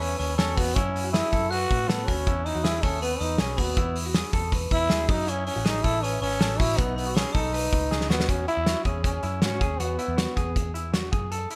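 Breezy and bright, this excerpt of jangly indie pop moves at 159 BPM in a straight 4/4 in E major, cycling through F#m7, Esus2 and B before settling on Esus2 for the second section. A growling, raspy trombone carries the melody up front in a gritty, brilliant pop solo voice with vibrato, until it stops at 10.6 seconds. Behind it, a close-miked glockenspiel struck with hard plastic mallets adds a sparkling, bell-like second line in the background, dropping out at 8.1 seconds. An electric guitar through a small old amp plays compressed, slightly broken-up picked arpeggios, while a foam-muted vintage bass sounds dark and round beneath. The loose acoustic drum kit sits up front with a punchy kick, a medium-tuned snare, hi-hat and a pumping studio room, and a drum fill at 7.9 seconds leads into the second section under light reverb.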